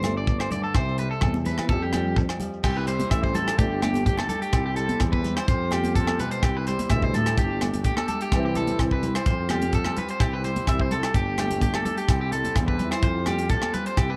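A dry, close-sounding cut from a longer carefree, danceable highlife guitar band piece at 127 BPM in C major, where a twangy, slightly broken-up electric guitar with tape echo picks arpeggios up front over a tight funk drum kit, a smooth-topped dark tuba bass, a dark fingerpicked nylon-string guitar, ringing agogo bells, grainy shekere and bright, hard-hand congas, with a buzzy vintage combo organ adding sustained chords with light vibrato from 2.6 seconds as Gsus2, C and Fsus2 cycle.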